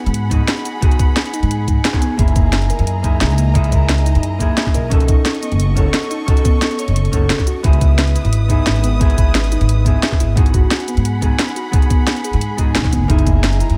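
A dry, close sound with little reverb frames this soulful, rolling liquid drum and bass excerpt at 176 BPM in a straight 4/4, cut from a longer piece. Sitting up front, a woody pizzicato upright bass on steel strings moves low under chords that cycle from G#m7 through F#13, B9 and C#m9. A sampler-style electronic kick, gritty, thumpy and tape-warm, joins at 0.3 seconds, while an overdriven, layered drum kit, re-recorded in a small room, supplies a cracking snare, bright hi-hats and shaker. Above them a clean, picked hollow-body jazz guitar plays dark accompaniment through dub echo, and a muted string section bowed con sordino holds veiled, vibrato-tinged sustained chords. Deeper in the background, a harp-like synth pluck with a fast attack and ringing decay spins soft, full-bodied arpeggios with filter sweeps, chorus and dub echo.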